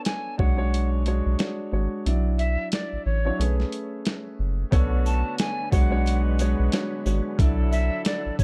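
A swung 90 BPM boom-bap groove in 4/4 drives this gritty, dark hip-hop excerpt in B dorian, its pitched-down, compressed sampler kit thumping up front with a medium-tuned snare, hi-hat and shaker, while the kick drops out from 2.1 to 4.7 seconds and a soft, round dub sub bass sits deep beneath from 0.4 seconds. A breathy, crisp-attacked jazz flute with vibrato and chiff carries the melody through delay over a dark grand piano with audible action noise and a vintage cassette-tape tint, moving through chords like Bm69, Dmaj9/B and Amaj9/B. At 4.7 seconds a very quiet tonewheel organ with fast rotary swirl, distant horn stabs with delay and jingly sleigh bells in the background join, all wrapped in a dusky studio reverb.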